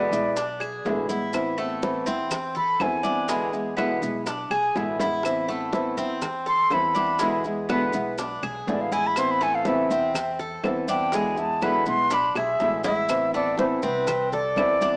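A rough home-demo mix with a small-speaker sound, bathed in a lush hall reverb, carries this nostalgic fragment of Cuban son and guajira in A harmonic minor at 122 BPM, swaying between E7 and Amadd9. Up front, a breathy, close-miked concert flute plays an unsteady, tongued solo with vibrato until 13.1 seconds, over a dark, fingerpicked flamenco guitar and bright, metallic arpeggios from a double-strung Cuban tres with slapback echo. Underneath, a woody, thumpy gut-string upright bass plays pizzicato, while background congas with thick, damped skins, round low-tuned bongos struck with hard hands, woody claves and grainy, mellow maracas keep the groove, with drum fills at 4.8 and 12.4 seconds.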